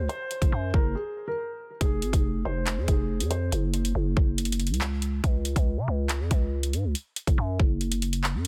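Drill-style hip hop at 140 BPM in a half-time feel, cold and dark, cut from a longer piece. A dark, mellow baby grand piano carries a brief melody through low-pass filtering and digital delay, its intimate tone showing audible action noise, and it stops at 3.5 seconds, while a growling, buzzy 808-style bass with a fast attack and an up-front drill kit of hard-clipped kick, metallic hi-hats and handclaps drive on through 8.5 seconds, with a break between 1.0 and 1.8 seconds. The chords move from Gb to Fm to Gb5 before dropping away, and the dry mix is densely and heavily limited.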